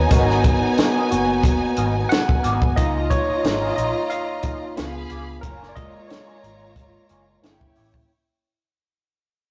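Lush 1970s-style soul at 90 BPM in 4/4, this warm, romantic fragment sits in Db mixolydian with a gently swung sixteenth-note feel and fades out across its full 8.1 seconds. A barky tine electric piano takes the solo from the start, bright and lightly overdriven through a combo amp, sitting up front over chords that move from Abm9 through Db69, Db7b9 and Gbmaj9 to a closing Gdim7. Beneath it, a rich studio violin section carries a second line with close, expressive, bowed vibrato, while a vintage muted fingered electric bass gives a round, foam-muted, punchy low end. A compact cocktail drum kit with a high-tuned snare and punchy kick plays hi-hat, kick and snare, dark and smooth in its small room and placed up front. An electric guitar through a small old amp adds a twangy, slightly broken-up picked riff with wah, tucked into the background. The whole take has the rough feel of a rehearsal-room recording, with saturation and a moderate stone-room reverb.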